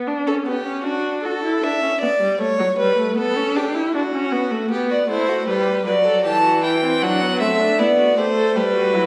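Classical baroque-style fugue excerpt for string quartet in 3/4, elegant and lively, where an expressive viola accompaniment with vibrato and portamento opens, a second violin line with a soft attack and gliding slides joins at 0.3 s, and a smooth, even violin melody enters on top at 4.9 s, with each bowed voice close and up front against the wet, resonant reverb of a recital hall.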